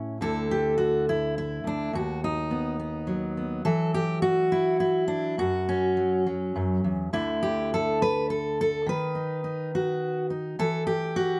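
Pastoral and hopeful, this short folk passage, cut from a longer piece, features a lone fingerpicked steel-string dreadnought acoustic guitar in 3/4 at around 104 BPM, played with a loose, rubato feel. The guitar sits up front with close, detailed miking, fresh-string sparkle and light reverb, moving from Dsus2 through B/D# to Esus2 before a chordless stretch at 7.1 seconds and a closing Emadd9 at 10.6 seconds.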